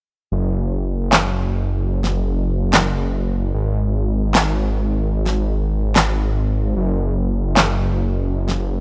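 A thick, detuned sawtooth bass with a chorus sheen opens this euphoric, bright future bass excerpt, its saturated, sustained low notes sitting up front from 0.3 seconds onward. A fat, layered electronic snare with handclaps enters at 1.1 seconds, tape-tinged and close, driving a lightly swung half-time groove. The sound is dry and immediate, with little reverb on either part.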